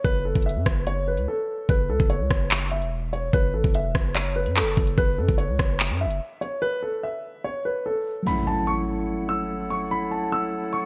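A dark, boxy concert grand piano carries a low-passed melody over a punchy, heavy 808-style bass and an up-front drill kit of knocking kick, metallic hats, handclaps and rim clicks with gated reverb, setting a menacing half-time drill groove at 146 BPM in F# minor on an F#m7 chord; the drums stop at 6.5 seconds, and from about 8.3 seconds an electronic impact arrives with a mellow, clean tine electric piano heard through its built-in speakers and an airy, hollow small flute group holding sustained chords, the mix carrying a bright 1980s-style digital sheen with light reverb before the piece is cut off.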